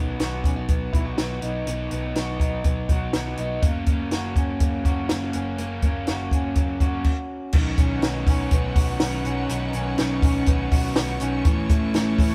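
Jangly indie pop at 123 BPM in a straight 4/4, nostalgic and youthful, cut from a longer piece and played live in one room with light reverb. An overdriven garage guitar with spring reverb accompanies arpeggios from a slightly broken-up, compressed guitar through a small old amp. Meanwhile a foam-muted, round picked bass holds the low end and a dry cocktail kit sits up front with a punchy kick, high-tuned snare and dark cymbals. After a brief stop at 7.1 seconds, the music moves into B mixolydian at 7.5 seconds, where a lush bowed string section with vibrato enters in the background as the chords shift from B and F# to Badd9 and A.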